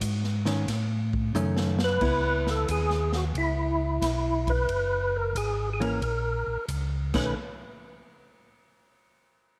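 Soulful and greasy, this soul jazz organ trio excerpt swings at 90 BPM in 4/4, with a mellow, round tonewheel organ holding down the bass through chorus vibrato and a slow rotary speaker, while an airy, polished big-band drum kit with a punchy kick plays from the start and adds a fill from 1.3 to 2.0 seconds. A dark, compressed hollow-body jazz guitar comps from 0.5 seconds. At 1.8 seconds a fat, percussive tonewheel organ with key click takes the melody up front, over chords moving from B9 through C#m7 and F#, all set in a moderate spring reverb.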